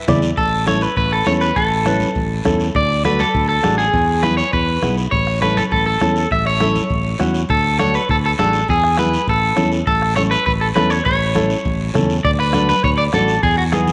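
Bathed in a moderate echo-chamber reverb, this sunny, danceable cumbia fragment moves at a brisk 202 BPM in A major, cycling through A, D and E chords. Up front, a twangy, slightly broken-up picked electric guitar with spring reverb carries the melody, while a fingerpicked flamenco guitar adds warm accompaniment and a bright, direct fingered electric bass anchors the low end. In the background, a soft-beaten, close and dry bombo and thin-skinned medium-tuned congas, joined by a raspy guiro, keep the percussion going, with a second section arriving at 9.9 s before the excerpt is cut at 13.9 s.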